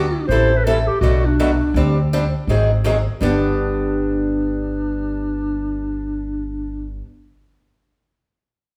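Acoustic string swing in the jazz manouche style, this charming, lively fragment, cut from a longer piece, moves at 165 BPM in 4/4 with a 62% swing on the eighth notes in G major. A warm clarinet carries a second line with vibrato and a present, jazz-styled solo voice, sitting up front between D4 and C5. A picked acoustic archtop guitar supplies the accompaniment with a boxy, woody tone from old strings, ranging from G2 to A4. Underneath, a pizzicato upright bass on gut strings gives a thumpy low end between G1 and D2, also placed up front. The chords pass through Am7, Bm7, D7sus4 and Ab7 before landing on G at 3.2 seconds, where the music moves into a new section. The band plays live together in one room, and a large studio reverb with a 1.3-second tail gives the trio a wet, roomy sound.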